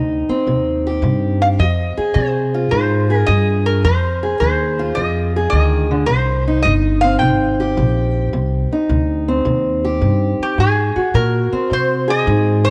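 A boxy, fingerpicked parlour steel-string guitar and a woody pizzicato upright bass open this mournful, brooding piece of swung acoustic country blues, moving through a minor progression. At 1.4 seconds a bright, nasal, metallic resonator slide guitar, played with fingerpicks and carrying a cassette-tape colour, takes the melody up front. The fragment, cut from a longer piece, has the intimate feel of a home cassette recording with light reverb.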